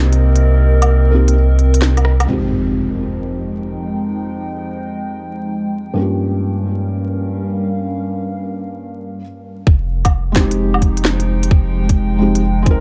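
A dark, crackling vinyl haze and light reverb frame this melancholic, wistful excerpt of swung future garage, cut from a longer piece. Throughout, a soft, felt-muted upright piano plays intimate accompaniment with audible action noise and tape echo, while a warbling, detuned tape-like pad holds nostalgic, lo-fi chords through chorus, phaser and its own reverb, both breathing with sidechain pumping. A round sine sub bass and an organic electronic kit with a woody snare, crisp hats, rim clicks and woodblock open the passage, closing with a drum fill before dropping away at 2.3 seconds as an electronic impact sounds. Once the impact fades, the middle stretch gives the piano and pad room over rich ninth-chord harmony until 9.7 seconds, when the deep sub bass returns alongside a tight, up-front electronic kick, and the kit rejoins at 10.0 seconds. The drums carry a tape-warm character, re-recorded in a large room.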